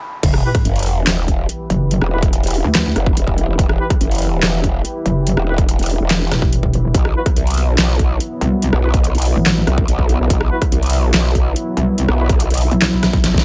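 Heavy wobble dubstep in E minor at 143 BPM with a half-time feel, this chaotic, aggressive excerpt opens on a noise sweep and sub drop before the drop lands at 0.2 seconds, where a punchy overdriven kick and a layered kit of deep snare, metallic hats, handclaps, rim click and crash pound alongside a growling, saturated growl bass and, from 1.7 seconds, a distorted FM wobble bass with a metallic edge, while a lush detuned supersaw pad pumps under sidechain and low-pass filtering, a distant mellow brass ensemble adds dub-echoed stabs in the background, the chords move from Em to Bsus4, and a drum fill arrives at 13.2 seconds, all in a dry, loud mix.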